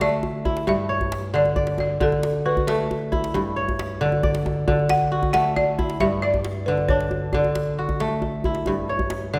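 Up front, a crisp, ringing fingerpicked kora spins arpeggios over a woody, buzzing balafon melody struck with rubber mallets and a tight, cracking djembe, giving this flowing, joyful excerpt of West African traditional string and xylophone music in 12/8 a steady pull between D and G5 chords, all set in a lush concert-hall reverb.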